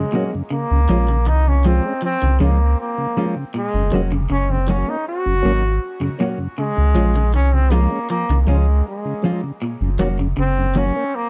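Dry and close in a 1970s studio manner, this uplifting reggae excerpt sets a bright, punchy trombone melody with scooped notes and dub echo over a dark, lightly overdriven tonewheel organ through a slow rotary speaker, twangy picked guitar arpeggios in spring reverb, a compressed, fingered second guitar with its own dub echo, and a round sine sub bass that enters at 0.7 seconds and sits up front.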